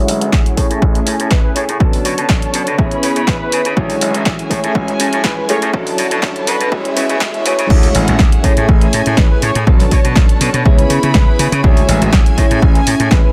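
A straight 4/4 groove at 122 BPM drives this funky, feel-good excerpt of filtered disco house in A major, where an up-front, tape-tinged electronic kick and a punchy analog drum machine's snare, hi-hat and crash cymbal anchor a bright, overdriven slap bass, a dark, mellow grand piano with phaser plays alongside a picked, clean electric guitar riff and a woody, bowed violin section, both sitting back in the mix, and a fat, detuned synth brass melody with chorus and dub echo enters at 1.3 seconds while a very quiet riser and a filter sweep build until the drop at 7.7 seconds, with most parts pumping to the kick in a dry mix.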